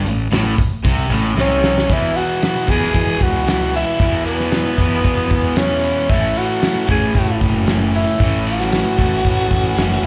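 A hollow-bodied, overdriven guitar and a bright, distorted second guitar open this swaggering classic rock excerpt in A major, both picking riffs with slapback echo, the second sitting in the background. A fuzzed, fingered electric bass with overdrive thickens the low end beneath them, and a cloth-damped drum kit with a fat snare, tight kick and rolled-off top sits up front at a straight 114 BPM in 4/4. At 1.4 seconds a drum fill leads into the main section, and at the same moment a raspy, growling tenor saxophone steps forward as the close-miked solo voice, gritty and full of vibrato, with its own slapback echo. Underneath, the harmony moves from A to E and then to A6 at 6.1 seconds. The whole thing sounds like a live club gig heard through the venue's PA, with a touch of club reverb and a confident energy.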